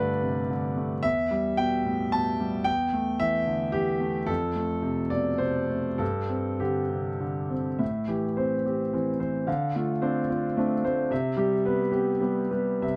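In a rubato three-four, this brief excerpt of reflective, intimate neoclassical minimalist piano is carried by a solo concert grand that sounds clear and up front, with audible action noise, deep bass, a boxy body and long sustain. Close, detailed miking with little reverb keeps it close to the listener as the harmony moves from Gadd9 through Em, F and Gsus4, then turns at 7.8 seconds toward Am7, Dm7 and Cmaj7 before the cut at 13.0 seconds.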